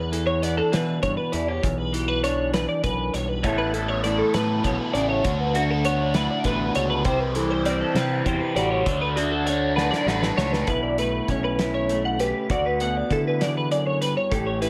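In a straight, lilting 6/8, this wistful yet playful math rock and midwest emo excerpt opens with a slightly broken-up electric guitar through a small old amp picking out the accompaniment. Above it, an up-front twelve-string electric guitar spins bright, twangy arpeggios through analog chorus, while a growling fingered bass with overdrive and a loose indie kit (punchy kick, fat snare, hi-hat, with a roomy, rolled-off top) hold the ground. A double-tracked overdriven guitar riff with phaser joins at 3.4 seconds and drops out at 10.7 seconds after a drum fill, as the chords move through Em7, Asus2, D6 and Cmaj7 toward Bm11 and D69 under light reverb.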